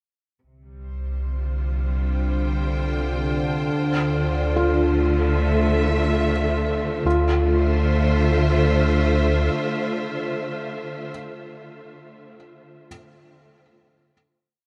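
Spacious and reflective, this short ambient piece in D minor drifts at 73 BPM as a clear, lush bowed string section fades in from 0.4 seconds over a deep, round sine sub bass, joined at 1.5 seconds by an evolving sawtooth drone with chorus and at 4.6 seconds by soft, felt-muted upright piano with audible action noise scattering delayed notes in the background, the whole piece bathed in a huge reverb with a cassette-tape colour as Csus4 gives way to Dm7.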